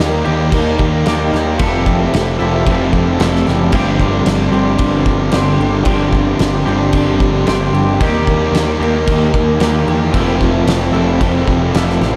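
Shoegaze-leaning dream pop rock at 112 BPM, wistful and blissful, drifts through Eb, Fmaj9 and G7sus4 as a thick fuzz guitar, a crunchy double-tracked overdriven guitar with spring reverb and a twangy small-amp electric guitar with reverse reverb play riffs over a shimmering, octave-doubled fingerpicked twelve-string acoustic with finger squeak and diffuse delay, a punchy fuzzed picked bass and a loose indie kit with a fat snare and dark cymbals, all soaked in a huge dreamy reverb in this piece cut from a longer track.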